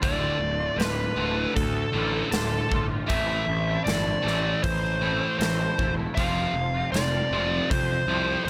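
A nasal lead guitar with a parked wah sits up front, its dark, overdriven tone carrying the melody between A4 and F5 in this brooding, angsty piece of quiet-loud alternative rock in D minor. Beneath it, a biting overdriven guitar plays a picked riff low in the range, while a twangy electric guitar at the edge of break-up adds fingered arpeggios through an ensemble chorus. A growly, fuzz-laden picked bass, bright and direct, anchors the low end. The big rock drum kit, acoustic with a punchy kick, a medium-tuned snare and hi-hat, drives a straight 4/4 at 78 BPM before stopping at 7.9 seconds, just short of the cut at 8.5 seconds. The chords move from Dm to Am to F, set in a small room ambience.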